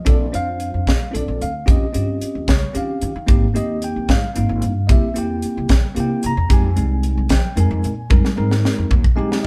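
A crisp, up-front fusion drum kit drives this nocturnal, intense passage of electric jazz fusion in a straight 6/8, cut from a longer piece, its high-tuned snare, punchy kick, hi-hat and toms sounding airy and polished in a studio room. Beneath it, a pizzicato upright bass with steel strings offers a woody, growly low end. A bell-like tine electric piano comps with a bright, clean and direct tone, sitting up front alongside the drums. The band plays live in one room with light reverb as the harmony moves from Bbmaj7 through Eb13, Abmaj7 and C7 before settling on Fm9. The drums break into a fill at 8.1 seconds, and the electric piano adds a fill of its own at 8.9 seconds, carrying the passage to its close.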